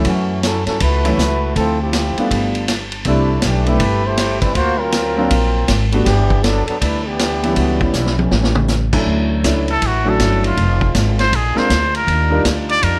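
Dry, closely miked and detailed, this energetic, joyful big band swing fragment at 160 BPM opens with a clear, smooth-topped trombone section carrying the line over an intimate grand piano with audible action noise, a gritty, saturated vintage kit with dark cymbals that plays a fill at 7.9 seconds, and a woody pizzicato upright bass, before a nasal, breathy straight-muted trumpet takes the melody from 9.7 seconds against a bright trombone section holding chords in the background.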